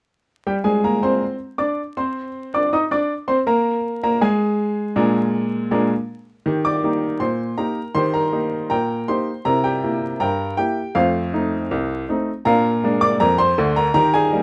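Under a dark haze of vinyl crackle and light reverb, a clear, woody upright piano sits up front and intimate, its short sustain and audible action noise carrying a playful, jaunty ragtime excerpt in Eb major at 80 BPM in a straight 2/4, playing solo from 0.5 to 14.4 seconds across a span from C2 to Eb6 and moving from an opening free of any chord into Bb7 at 3.5 seconds, then into a second passage at 6.5 seconds that travels through Eb, C7 and F7 before settling back on Bb7.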